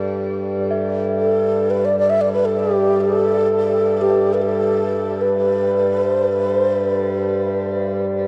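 World meditative music in free time: this peaceful, calm fragment, cut from a longer piece, rests on a reedy, breathing pedal harmonium drone, up front with a boxy small-room tone, while a metallic bronze singing bowl struck with a felt mallet rings softly in the background with slow beating and shimmer reverb. At 1.2 seconds a low bamboo xiao enters up front with the melody, breathy and tongued with vibrato and lifted highs, carried on shimmer reverb and a diffuse ambient delay until 7.6 seconds. The whole recording sits in a huge, wet ambient reverb and carries the worn, warbling pitch drift of old cassette tape.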